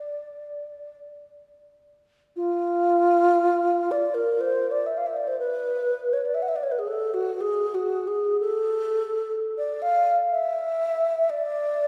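Classical and meditative, this short, mournful passage for unaccompanied alto flute unfolds in a free, expressive rubato over a loose three-beat metre, its beats stretching unevenly. The wooden-headed alto flute sounds airy and mellow, with vibrato and crisp attacks, ranging between F4 and F#5 throughout its 11.9 seconds. It is set in a wet church reverb heard from further back in the room, and the opening idea returns at 2.4 seconds in this fragment cut from a longer piece.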